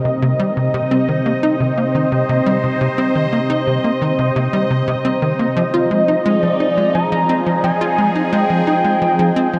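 A tight, punchy sequencer bass riff of sawtooth and square wave drives this expansive, cosmic excerpt of ambient, sequencer-driven space music at 87 BPM in C minor, beneath a bright, airy, detuned resonant pad sustaining chords that move from Cm7 to Fm7, a bubbling stepped-filter texture with random resonant steps, and, from 5.6 s, a shimmering retro pulse-width lead melody with vibrato and delay, the whole set in a vast ambient reverb.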